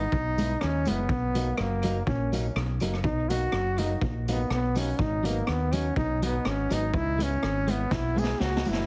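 Ska at 123 BPM in B major, upbeat and bouncy with a lightly swung feel, this excerpt is cut from a longer piece and features a bright, forceful trombone solo with light vibrato and analog delay riding up front over a round, punchy fingered electric bass. A slightly broken-up electric guitar with harmonic tremolo plays accompaniment, while a gritty, saturated garage drum kit with a boomy kick and analog delay and a jingly tambourine in the background keep time, closing with a drum fill from 7.9 seconds. The chords move from C#m7 through Bmaj7 and G#m7 and back, all heard through a heavily compressed, radio-like sound with vinyl crackle and a moderate club reverb.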